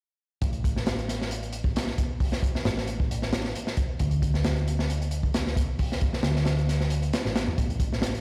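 Energetic and playful, this breakbeat excerpt moves at 134 BPM in 4/4 with a light swing on the sixteenths. A crunchy breakbeat drum kit sits up front, its kick, snare and hi-hat sounding saturated and gritty with a mid-forward, rolled-off top, a tight kick and a medium-tuned snare. Beneath it, a hollow-body short-scale electric bass, picked and amped, carries a dark, round low end between A1 and E2. Both parts play together from 0.4 to 8.2 seconds, the drums set slightly ahead of the bass in level. The excerpt sounds as if played on a big sound system in a bare stone room, with light reverb.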